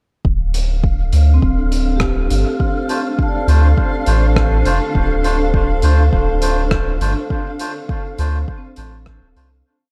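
Ambient dub at 102 BPM in D minor with a hazy, spacious mood, built on a round, up-front sub bass line and a soft, deep electronic kick, joined by a gritty, low-tuned acoustic kit's sparse closed hat and rim beat, a blurred granular pad drifting through slowly shifting chords from 1.2 seconds, a metallic vibraphone whose dub-echoed arpeggio loops drift against each other, reedy melodica off-beat chord stabs entering at 2.9 seconds, and a breathy, wind-like noise holding a high F5, all in an echo-heavy small-room mix that fades out from 6.5 seconds.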